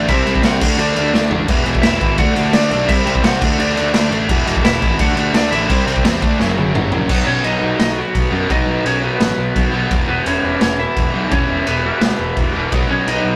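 A rough rehearsal-room recording with light reverb catches this energetic, upbeat punk rock fragment at 171 BPM in a straight 4/4, cut from a longer piece. Up front, a raw garage drum kit plays with a punchy kick, medium-tuned snare, toms and dark crash cymbals, its saturated, gritty, warm sound rolled off at the top and pumping in a small room, and marked by fills around 1.1 and 6.4 seconds. A fuzz-laden picked electric bass, direct and amped, drives the low end beneath three bright, overdriven rhythm guitars: a cranked stack, a second electric, and a very quiet, double-tracked semi-hollow body, all sitting in the background with the riff. Over them, a twangy, compressed lead guitar, only slightly broken-up, carries the melody. The opening section moves through C, D and E before a turn to F#, and at 7.1 seconds the band drops into half time over B and E5 for the remainder.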